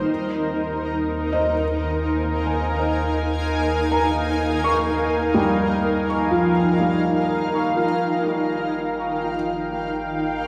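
A granular cloud pad sits up front in this luminous, serene ambient fragment, holding sustained chords with a cloudy, blurred, slowly evolving tone that blooms from a slow attack into a long release inside its own built-in reverb. Alongside it, a felt-muted upright piano plays soft, mellow arpeggios through a delay, giving the texture an intimate, warm quality. A deep, round sine sub bass anchors the low end and fades out over the first 7.8 seconds. The harmony rests on an Eb9sus4 chord before shifting to Eb9/Ab at 7.8 seconds, where a new section begins. A wet concert hall reverb blended with small room ambience surrounds the whole piece in a gentle, spacious glow.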